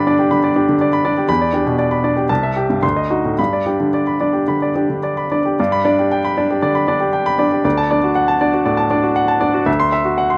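A clear, intimate baby grand piano sits up front in this short fragment of a classical virtuoso study in G major, its natural tone carrying audible action noise in a dry, close room. The sparkling, heroic mood moves in 4/4 with a rubato feel between 107 and 123 BPM, spanning C2 to C6. The opening phrase returns at 5.6 s and settles toward dominant harmony, ending on a D9 at 9.7 s.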